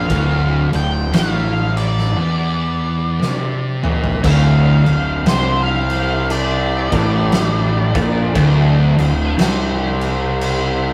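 An ominous, hypnotic stoner and doom metal passage at a slow 58 BPM in D minor opens with a dark octave-fuzz lead guitar melody over two picked fuzz guitars, one dark and one very quiet, plus a growly, bright fingered bass up front and an oversized low-tuned acoustic kit with boomy kick, fat snare, and gritty, pumping room sound, which plays a fill at 3.2 s before a double-tracked crunchy overdriven guitar enters in the background at 4.2 s as the lead turns into a solo, all swung and captured as a rough rehearsal-room recording with moderate reverb.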